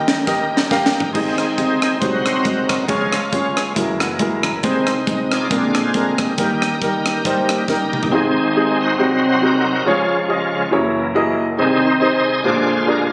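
A lightly swung 4/4 groove at 138 BPM drives this hopeful, jubilant uptempo gospel excerpt in Ab major, with an airy, polished fusion drum kit up front (punchy kick, high-tuned snare, hi-hat, rim click, toms and crash) until it stops at 8.1 s after a short fill. A bright, shouting tonewheel organ with key click, chorus vibrato and a slow rotary speaker holds full chords and takes a solo from 1.1 s, while a natural-sounding grand piano plays accompaniment and adds a fill at 3.8 s. The performance was captured on a phone in a small room and given light studio reverb and compression.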